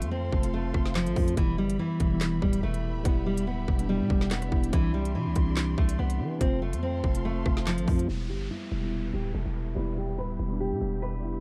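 A fingerpicked nylon-string guitar with finger squeak leads with a dark, full-bodied, filtered melody and delay over a worn, slightly out-of-tune tine electric piano with phaser, lush bowed strings sustaining chords in the background, a growling, buzzy 808-style bass and a drill drum kit with a hard-clipped kick, woody snare, crisp hats and handclaps in this menacing half-time drill excerpt at 143 BPM in E phrygian, until the drums stop at 8.1 seconds and a quiet downlifter and filter sweep carry it through to 11.4 seconds.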